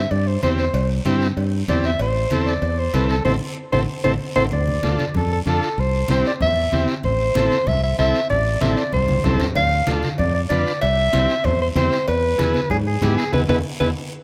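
Driving and passionate, this cumbia excerpt moves at a brisk 190 BPM in A minor, with a mellow, smooth-topped soprano saxophone carrying the vibrato-laden melody up front over a round, direct fingered electric bass. A vintage, buzzy combo organ with heavy vibrato and overdrive fills in the accompaniment, while raspy guiro scrapes along, and distant low-tuned congas and ringing cowbell and timbales sit in the background, the cowbell and timbales dropping out at 4.4 seconds until they return at 9.6 seconds. The band hits accents and drum fills at section ends, the chords cycling through C, Am and Dm before landing on E at 12.1 seconds, all bathed in a moderate plate reverb.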